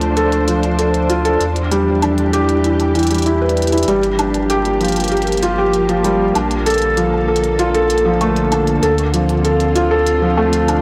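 IDM at 97 BPM in G dorian, eerie and intricate, where a muted felt upright piano with audible action noise plays up-front arpeggios through a low-pass filter and delay over silky, warbling string-machine chords with ensemble chorus, a round sine sub bass with tube saturation and clicky electronic hi-hats, all bathed in a lush hall reverb and a blown-out, overdriven sound across this 10.8-second cut from a longer piece, moving from Dm7 through Em7, Gm7 and Bbmaj7 back to Dm7.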